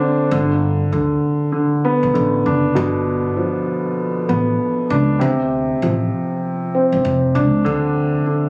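A dark, mellow grand piano sits up front with a smooth, long-sustaining vintage tone, filtered and colored by cassette-tape grit as it moves from G7 to Dm7 at 5.2 seconds in this reflective, gritty boom-bap hip-hop fragment with a swung 16th-note feel. A woody, pizzicato upright bass on steel strings enters at 0.3 seconds underneath, sitting lower in the mix. Light reverb and a small-room ambience, captured on a phone with compression, give the short clip an intimate, lo-fi studio character.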